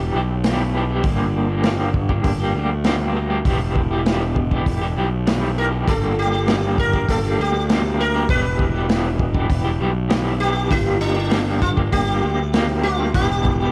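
Psychedelic rock at 99 BPM with a hypnotic, trippy mood, built on a twangy, slightly broken-up electric guitar riff with tremolo and a round, fuzzed fingered bass, both up front as the chords shift between Em and Gm. A crunchy breakbeat kit with a punchy kick and rolled-off top enters at 0.4 seconds. At 5.6 seconds a buzzing, shimmering sitar joins with a plectrum-plucked melody carrying tape echo, all set in a small room with light reverb.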